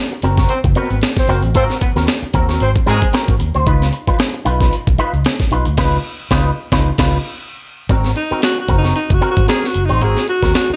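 Playful funk excerpt at 114 BPM in Ab mixolydian with a light 16th-note swing, where a gritty, up-front breakbeat sampler kit with a thumpy kick and high-tuned snare drives a dark, round, foam-muted fingered bass and a clean, scooped electric guitar through an envelope filter and ensemble chorus, while a punchy horn section with vibrato adds a second line from 0.5 to 3.1 seconds, the band hits an accent near 5.8 seconds, and a breathy, whispered alto saxophone with tape echo takes an intimate jazz-style solo from 8.2 seconds.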